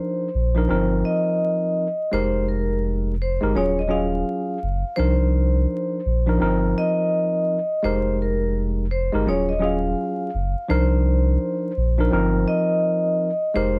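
A dark, ringing vibraphone with medium hard mallets and a medium motor vibrato carries the melody through a slapback echo, over a worn, slightly out-of-tune tine electric piano accompanying on minor eleventh chords in C minor. This gritty, tough hip hop cut moves at 84 BPM with a swung sixteenth feel, and a round sine sub bass enters at 0.3 seconds to sit deep and up front. Moderate studio reverb and vinyl crackle frame this short excerpt from a longer piece, which shifts to a new section at 10.7 seconds.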